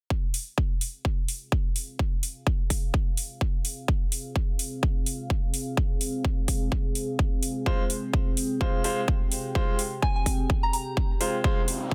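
Swung sixteenths drive this aggressive, bouncy bass house excerpt, with a punchy, up-front electronic kick and metallic hi-hats over a dense, heavily limited master with little reverb. From 1.9 seconds, a deep, moody pad of detuned, wave-folded saws carries sidechain pumping, chorus, its own reverb, 12-bit sampler grit and a filter sweep. A brilliant baby grand piano stabs through delay from 7.7 seconds, a pure, gentle FM bell melody with phaser flickers briefly at 10.0 seconds, and an electronic riser closes the cut.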